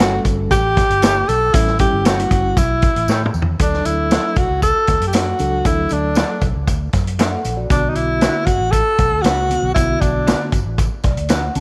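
Lightly reverberant studio sound opens this uplifting slice of uptempo 1960s-style soul in D major at 117 BPM, where a breathy, whispered tenor saxophone carries the melody up front with vibrato and scooped notes until 10.5 seconds. Beneath it, a mellow tine electric piano comps through its built-in speakers, a slightly broken-up electric guitar adds lo-fi stabs in the background, and a dark, round, foam-muted bass with tube saturation anchors the low end. A punchy, rolled-off vintage drum kit drives the groove with a fill at 3.1 seconds into the second section, with jingly tambourine and barely audible soft-handed congas behind it, before the electric piano closes with a fill at 10.8 seconds over the Bm chord.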